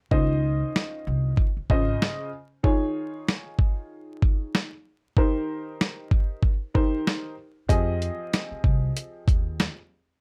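Boom-bap hip-hop with a tough, gritty mood, this swung cut from a longer piece rides a dusty soul sampler-style drum kit whose compressed, thumpy kick, medium-tuned snare and hi-hat sit up front throughout. A dark upright piano carries the accompaniment, mellow, worn, intimate and slightly detuned, with audible action noise, a boxy body and short sustain, its tone further aged by cassette tape coloring and filtering at both ends of the spectrum. The chords move from Dbmaj9 to Eb9sus4 and Eb6 before settling on Fm7 at 7.7 seconds. A pizzicato upright bass with steel strings adds a woody, shadowy low end at the start, drops away at 1.9 seconds, then returns at 7.7 seconds alongside that final chord. Light reverb and a layer of vinyl crackle give the whole a dusty grain.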